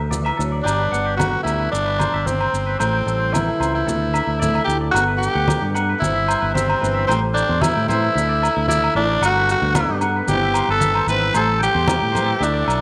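A straight 4/4 pulse at 112 BPM drives this joyful, carefree highlife guitar band fragment in G major, with a round, dark fingered electric bass up front, low-tuned congas with a bright, damped skin and ringing agogo bells in the background, and grainy maracas close and dry. A fingerpicked flamenco guitar supplies accompaniment while a clean, twangy electric guitar plays arpeggios with slapback echo in the background, the chords cycling through Gmaj7, Cmaj7/G, Am7 and Dsus2. From 0.6 seconds a breathy, raspy tenor saxophone carries the melody up front with vibrato and a gritty, punchy edge, all set in a moderate echo chamber reverb.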